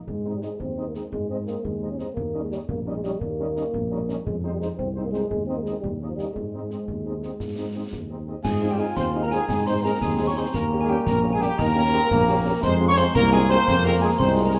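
A dark, punchy trumpet section carries the melody of this festive, spirited military-style march for wind band, set in 6/8 at 115 BPM in Ab major and heard as a cut from a longer piece. From the opening, an up-front mellow tuba with a smooth top anchors the bass, joined by a soft-attacked euphonium with vibrato on a second line and a distant, roomy French horn section filling in accompaniment. Concert bass drum, snare and clash cymbals sound close and dry, with bright cymbals. At 8.4 seconds the phrase begins again, adding a ringing, bell-like glockenspiel played with soft plastic mallets and an airy, hollow wooden piccolo in the same high register, while a clear trombone section holds sustained chords in the background. The harmony moves through Ab, Eb7 and Fm7 in a classical style, and a large studio reverb lends the band a spacious sheen.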